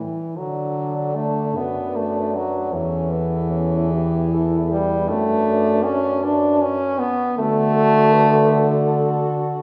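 Serene and tender, this short passage cut from a longer piece is lyrical classical writing for a French horn quartet, moving in a flexible, rubato 6/8. The accompanying horn sounds first at 0.0 seconds with a smooth top and light vibrato, sitting in the background, and the other three horns join at 0.4 seconds. The melody horn sounds distant and roomy with a light vibrato, set back in the blend, while the second line comes up front with a soft attack and a vintage tone. The bass horn is also up front, its soft attack and vibrato giving the low end a rounded, warm presence. The harmony moves gently from D through A7/E and D/F# back to D, the accompaniment stopping at 9.2 seconds just before the other horns finish, all of it carried by a lush recital-hall reverb.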